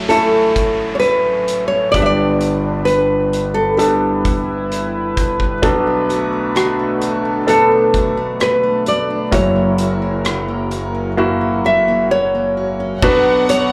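Heartbroken and emotional, this slow pop ballad in B minor at 65 BPM sounds like a live gig heard through a club's PA. A bright, fingerpicked nylon-string guitar carries the melody up front with audible finger squeak, over a clear concert grand piano with deep bass and short sustain, a shimmering, retro pulse-width pad with chorus, and a distant, roomy indie drum kit with dark cymbals and a tight kick. An electronic downlifter sits in the background until 5.6 seconds, when a full-bodied jumbo steel-string acoustic guitar enters with picked arpeggios, and an intimate violin section with light vibrato slips in at 13.0 seconds as the excerpt cuts off.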